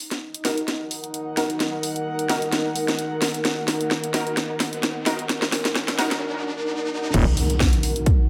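Set in a moderate, high-passed digital room, this gritty, bouncy bass house excerpt is a swung build-up in which a garage drum kit's cracking snare, hats and crash fill beneath a bright, detuned, filter-swept orchestra-hit-like synth stab with tape echo, an airy breathy pad and a deep, moody ambient pad that is also filter-swept, both pads pumping. Meanwhile a background riser climbs until the drop at 7.1 s, where a punchy electronic kick and a brief growling FM bass hit up front as the impact lands in the background.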